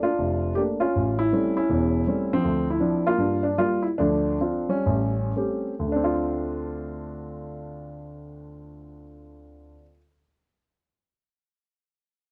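Moody and swinging, this short solo jazz piece for piano sits in D minor, moving in 4/4 with a loose rubato feel and a tempo that drifts between 108 and 162 BPM. A dark, mellow grand piano carries everything alone from 0.0 to 10.0 seconds, reaching from deep in the bass up to the middle register, its natural tone heard up front with a short sustain. The harmony opens on Bbmaj7 and an altered A7#9 before settling into Dm7 and Gm7 changes, with the pace slowing from 2.4 to 5.9 seconds. A second section begins around 5.9 seconds, landing back on Dm7. The sound is dry and close, in the manner of a 1970s studio, with a moderate booth ambience around the instrument, and the recording is cut from a longer piece.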